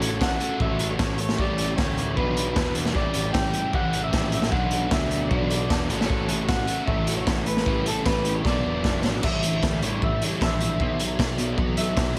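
Light reverb and a small-room ambience give this short, cut-off clip of indie rock a close, lived-in sound, with a raw garage drum kit sitting up front, saturated and gritty with a punchy kick, a medium-tuned snare, a rolled-off top and a pumping room. The mood is wistful yet carefree, moving at 153 BPM in a straight 4/4 in A mixolydian, tuned slightly under standard pitch. Carrying the melody is an electric guitar through a small old amp, lo-fi, compressed and slightly broken-up, colored by harmonic tremolo and tape echo. Behind it, two overdriven guitars play a riff in the background: one biting and thickened with ensemble chorus and tape echo, the other crunchy, both sitting over a bright, growly fuzz bass. A very quiet, shimmering retro pad built on pulse-width modulation holds sustained chords through changes that circle among F#m7/A, A7sus4 and Bm7. A drum fill from 8.4 s leads into a clean electric guitar solo that enters at 9.2 s and runs to the end of the clip.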